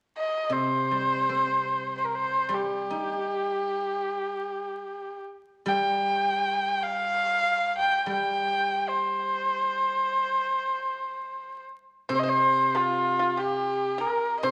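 An intimate, up-front erhu played by a single player opens this graceful, wistful fragment of Chinese chamber music in free time and C yu mode, tuned to A4 = 444 Hz, its airy bowed melody carrying light vibrato, soft attacks and portamento, while from 0.5 s a silvery, ringing guzheng played with fingerpicks adds warm accompaniment beneath it, and at 12.1 s a bright, dry, percussive pipa enters in the background with a second line, all set in a moderate recital-hall reverb under a layer of vinyl crackle.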